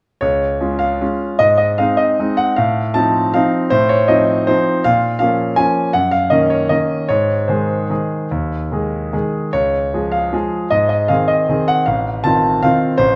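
Elegant and graceful, this classical piano waltz moves in 3/4 with a flexible, rubato feel. A bright concert grand plays solo from 0.2 to 13.2 seconds, its brilliant, smooth tone sitting up front with a deep bass and a vintage character, spanning A1 to A5. A moderate recital hall reverb surrounds it as the harmony passes from Db through Bbm and Ebm7/Gb before returning to Db and closing on F7/A, as the fragment is cut from a longer piece.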